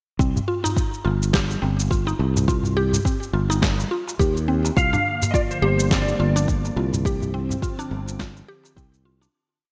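A swung 105 BPM groove in 4/4 opens this short, earthy organic downtempo piece in C minor: a deep, soft electronic kick, a gritty sampler-style shaker and snare dressed in gated reverb, and clay-shelled darbuka hand drums sitting in the background. Over a growly, up-front fretless bass with long gliding notes and sidechain pumping, a woody, round FM mallet pluck cycles a 10-step sequence that drifts against the bar, treated with chorus, phaser and delay. At 4.8 s the harmony moves from Cm to Bb as a clean lap steel enters with slide and volume swells in a free melody, and a detuned sawtooth analog pad with 12-bit sampler grit swells in beneath, all set in a lush hall and bright 1980s-style digital sheen before the fade-out begins at 6.3 s.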